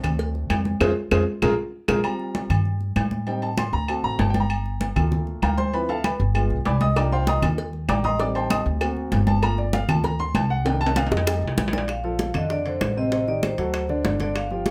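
A moderate studio reverb frames this lively, danceable Afro-Cuban jazz excerpt, where an intimate, up-front baby grand piano with audible action noise takes a solo over a thumpy, woody pizzicato upright bass, bright congas, metal-shelled agogo bells and timbales, and claves tucked in the background. Tight, high-tuned cowbell and bongos, played with hard hands and sounding close and dry, drop out at 2.0 seconds and return at 7.0, while a band accent and drum fills punctuate the groove. At 11.7 seconds a ringing vibraphone, struck with medium hard mallets with its motor off, enters with a tape-echoed melody over warm jazz harmony.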